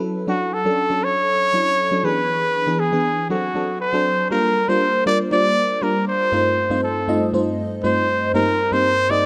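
In a straight 4/4 at 119 BPM, this urgent, dramatic pop excerpt sets a close-miked trumpet melody with light vibrato and tape echo over a lush, dreamy, detuned FM electric piano layered with a soft pad, whose fast-attack, decaying tones are colored by chorus and phaser, as the harmony moves through Dmaj7, E7 and D7 before settling into G minor at 4.3 s with Gm7, F7/G and Cm7/G, all within a moderate plate reverb.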